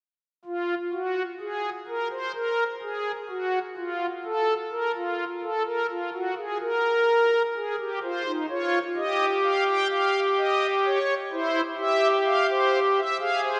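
A pipe organ drawing on its celeste string stops carries this short passage alone, sounding soft and shimmering, with a romantic voicing that sits up front in the mix. The music is a baroque-style four-part fugue in the classical tradition, moving at 64 BPM in a straight 4/4 that feels both contemplative and driving. The organ enters at 0.5 seconds and stays within a compact range from Eb4 to G5, its tone bathed in the long, wet reverb of a church with a 3.8-second decay. Harmony comes into focus only in the later part of the passage, moving through F5, Eb9/G and C/E. Cut from a longer piece, it ends at 13.6 seconds.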